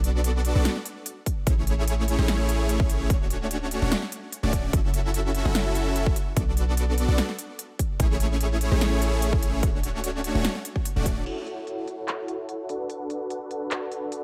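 Bittersweet and emotional, this future bass excerpt opens straight into a drop with a half-time feel. Huge, lush supersaw chords carry the riff throughout. Their detuned sawtooth unison is sustained and pumping, shaded by a low-pass filter and a digital delay as the harmony cycles through Bm7, Amaj7, Dmaj7 and F#m7. A deep, boomy 808-style bass with a sine body and a noise layer sits up front, hitting with a fast attack before decaying, its tone mellow under the same sidechain pumping. The big-room dance kit brings a punchy snare, crisp hats, handclaps and crash cymbal, all overdriven, with low-pass filtering on the hats, snare and cymbals, and an overdriven electronic kick joins at 1.3 seconds. At 11.3 seconds the bass and kick have dropped away, leaving the chords and kit to carry a sparser new section inside a digital ambience.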